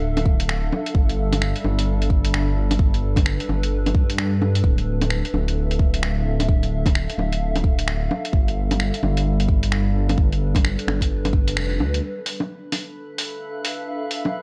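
A warbling, nostalgic pad with chorus and reverb opens this nocturnal, rainy future garage excerpt in D dorian at 130 BPM with a 16th-note swing, pumping against a deep, rumbling detuned saw bass as the chords move between Dm and G9. A muffled, pitched-down sampler kit of bongos, finger snaps and hi-hat sits up front beside a layered electronic kick, and the band lands an accent at 11.6 seconds before the bass drops out at 12.0. In the closing seconds a filter sweeps over the pad while a faint, glassy texture of drifting overtones enters at 12.6 seconds, all within a digital ambience.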